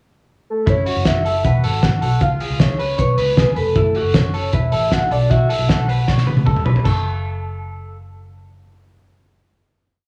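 Heard through worn, warbling cassette tape with a drifting pitch and a moderate studio reverb, this short, bittersweet and restless jangly indie pop piece in F# minor at 156 BPM sets a soft, octave-layered synth lead with chorus, phaser and digital delay singing a motif-based melody over twangy, slightly broken-up electric guitar arpeggios with their own delay, a round, foam-muted picked bass with slides, and a muffled, cloth-damped drum kit with a fat snare, tight kick and off-beat open hats, whose fill at 6.1 s leads into a final F# minor chord at 6.9 s, with the bass sounding until 10.1 s.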